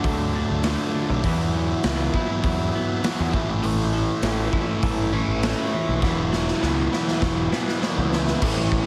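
A heavily compressed, radio-style mix with moderate studio reverb frames this short cut from a restless, bittersweet quiet-loud alternative rock track at 100 BPM in a straight 4/4, moving through D, Esus2 and A. A raw garage drum kit sits up front with a punchy kick and a gritty, saturated stone-room sound beside a bright fuzz guitar riff, while an overdriven, fuzzed picked bass drives underneath and a clean, compressed twelve-string electric guitar plays arpeggios in the background. An overdriven electric guitar riff with phaser joins at 3.6 seconds, and the drums play a fill from 6.0 seconds.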